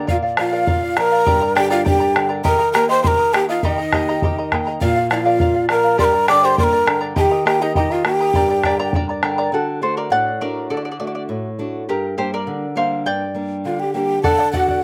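Andean folk in G minor at 102 BPM in a straight 2/4, festive yet wistful, where a breathy, hollow quena with crisp chiff and vibrato carries the melody up front over a second line from mellow large cane pan pipes, while a shimmering double-strung charango with slapback echo and a fingerpicked flamenco guitar accompany and a round, vintage-toned bombo keeps time; the charango then takes a solo from 9.5 to 14.2 s, the winds returning at 13.7 s, all captured dry in open outdoor air.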